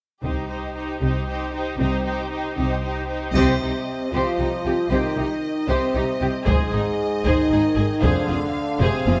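A taiko ensemble struck with hard sticks drives this dramatic, heroic excerpt of epic orchestral film score in C minor, moving in a straight 6/8 at 77 BPM as the harmony passes from Cm to Ab and then Fm. Bowed string sections carry the music: clear, intense first violins take the melody over darker second violins, expressive violas with portamento, background cellos and smooth, even double basses. The violins, violas and double basses sound distant and lush, and all the strings play with vibrato in a moderate scoring-stage reverb. At 3.3 seconds mellow French horns and vintage-toned trombones add sustained chords, a triangle rings briefly with a band accent at 3.4 seconds, and a drum fill closes the passage at 8.8 seconds.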